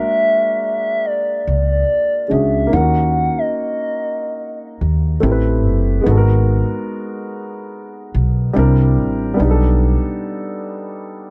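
A gliding portamento lead, smooth and sine-like with vibrato and a chorus sheen, carries the melody up front for only the first 4.6 seconds of this smooth, introspective R&B excerpt with a gentle sixteenth-note swing. A dark, mellow upright piano plays the accompaniment throughout, while a woody pizzicato upright bass on steel strings joins at 1.5 seconds and stops at 9.9 seconds, under a progression of altered dominant and minor ninth chords. The close, dry 1970s-style studio sound keeps these three up-front parts intimate and present.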